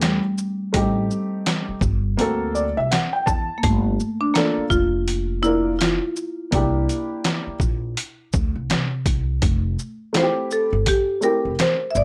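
Lightly reverberant and intimate, this relaxed, cool jazz-hop excerpt at 83 BPM in F major sets a dry, close-miked marimba melody against a worn, slightly detuned upright piano with audible action noise and plate reverb (which adds a fill from 2.2 to 3.6 seconds and drops out at 11.5 seconds), a dark, woody pizzicato upright bass, and a gritty, pitched-down, overdriven trip hop sampler-style kit of thumpy kick, snare, hi-hat and shaker, all swinging over rootless Fmaj9 through D7b13 and Gm7 to C7 before returning to Fmaj9 at 9.4 seconds.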